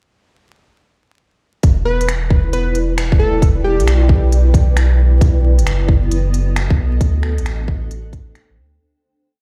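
At 1.6 s a melancholic, nocturnal future garage groove opens in E minor at 134 BPM with a 16th-note swing, as a muffled, tight two-step kick sits up front beside a round, deep sine sub bass of long gliding notes pumping against it, while a skittering shuffled beat of crisp closed hats and finger snaps ticks softly beneath; from 1.9 s a cloudy, blurred granular pad of slowly shifting Em7, B7 and D7sus4 chords breathes with the pulse, and a punchy, catchy plucky lead throws short delayed phrases from 1.9 s until 4.1 s, all heard through vinyl crackle and a big, bare-room sound system before the piece fades out from 6.4 s.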